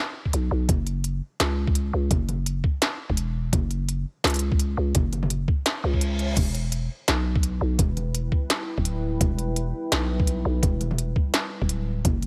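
The sound is close and dry, with little reverb, leaving a growling 808-style bass, a gritty, thumpy kick and an industrial drum kit all up front. This tense, cinematic half-time drum and bass runs at 169 BPM in 4/4 in E dorian, with a swung sixteenth feel, and is cut from a longer piece. The buzzy, fast-attack bass, the pitched-down, compressed kick and an electronic kit of clanging snare, crisp hats, crash cymbal and toms all start together at 0.3 seconds, the kit carrying a tape-tinged, small-room character. A reverse cymbal rises in at 5.8 seconds while the kick drops out briefly, setting up the arrival of an E minor chord at 6.4 seconds. From 7.5 seconds a deep, moody ambient pad of detuned sawtooth unison with a sub octave fades in slowly, its chorus, built-in reverb and sidechain pumping adding a dark haze beneath the drums.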